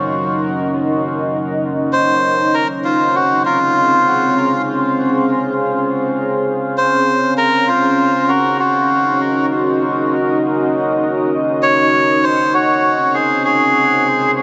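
This meditative ambient fragment moves in a straight, unhurried 4/4 pulse, cut from a longer piece and bathed in a huge, wet reverb with a long decay. A deep, dark ambient pad holds sustained chords from the start, its detuned sawtooth tone thickened by a sub octave, chorus and its own built-in reverb, sounding moody and mellow up front. The harmony shifts slowly between Ebm7 and Dbmaj7, giving the passage a brooding, suspended quality. At 1.9 s a melodica enters with the melody, its reedy, breathy and nasal voice sitting mid-forward and close, trailed by dub echo. The two parts hang together in the vast reverberant space, creating a deep, contemplative mood until the fragment ends at 14.4 s.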